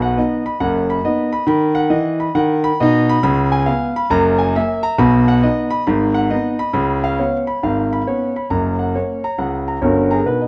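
Stride jazz in a playful, swinging mood: a solo concert grand piano carries this brief excerpt from 0.0 to 10.5 seconds, moving through a progression of major, dominant and minor seventh chords. The piano sounds warm and open, with deep bass, long sustain and an up-front presence. Close, detailed microphones and light reverb keep every note clear.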